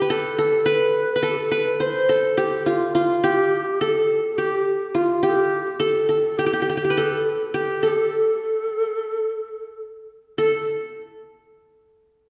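In a straight 9/8 at 210 BPM counted in eighths, this longing, hypnotic Turkish makam ensemble excerpt in A nihavent puts an up-front, bright-edged qanun, played with fingerpicks on its triple strings, on the melody until 10.6 s. Meanwhile a breathy, low, end-blown reed-cane ney, tongued and expressive with vibrato, carries a second line in the background until 10.7 s, the whole set in the wet reverb of a church or concert hall.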